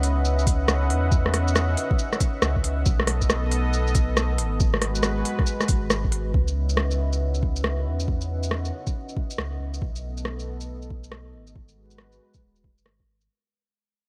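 A dark, detuned analog pad with a chorus sheen and a sidechain pump sustains slow-blooming chords over C#m11, B7 and G#m7 in this ghostly, rainy future garage excerpt at 138 BPM in C# minor, swung on the 16ths. Up front, a round, mellow sine sub bass pumps beneath it, while an organic electronic kit of crisp hi-hats, rim clicks and shaker is joined by a soft electronic kick from 0.5 seconds. Light reverb and vinyl crackle give a small-room haze, and the piece fades out from 6.3 seconds to its close at 13.3 seconds.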